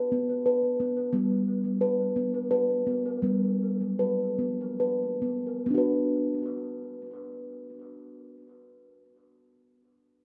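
A lone steel tongue drum, struck with soft rubber mallets, rings out round and airy, sitting up front between G3 and B4 in a meditative, hypnotic world piece in 3/4 and B minor, drifting at 66-88 BPM with a light swing and slowing from 1.1 to 5.7 seconds as the harmony moves from G to B minor, its tape echo blooming into a wet church reverb until the drum falls silent at 9.0 seconds in this fragment of a longer piece.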